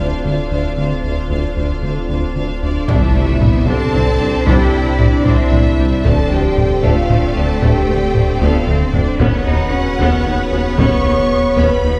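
Futuristic and relentless, this cinematic hybrid orchestral and electronic film score moves at 76 BPM in 6/8, opening with a clear violin section second line, a background viola section, a warbling lo-fi tape-like pad, a round analog bass riff, a distant tuba, a pure sine sub bass and a smooth cello section; at 2.6 seconds a focused violin melody and mellow French horn chords arrive, followed at 2.9 seconds by bright trombone chords, a very quiet double bass section, hard-stick taiko in the background and a faint electronic impact, with a drum fill at 8.4 seconds, the whole scene placed in a wet scoring-stage reverb heard from further back in the room.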